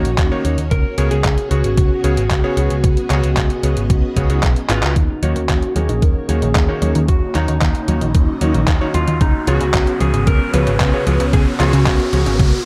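Danceable and melodramatic, this italo disco excerpt moves at 113 BPM in a straight 4/4 in Eb minor, swinging between Ebm7 and Db7sus4. A thumpy, overdriven electronic kick and a detuned 8-bit drum machine with gritty handclaps and hi-hat drive the groove, both carrying a small-room character, while a punchy, up-front picked electric bass with an envelope filter sits low beneath them. A lush, full-bodied string machine holds sustained chords in the background, a clangy, cutting electric grand piano adds stabs, and a dark, slightly broken-up lead guitar carries the melody through tape echo. After a drum fill at 4.7 seconds and a band accent, the second section opens at 5.0 seconds with a round, detuned analog pluck playing arpeggios through chorus and cassette-tape color, as filter sweeps move across the pluck, strings and guitar. A background riser builds from 7.1 seconds, and the whole mix sits in a moderate digital room reverb.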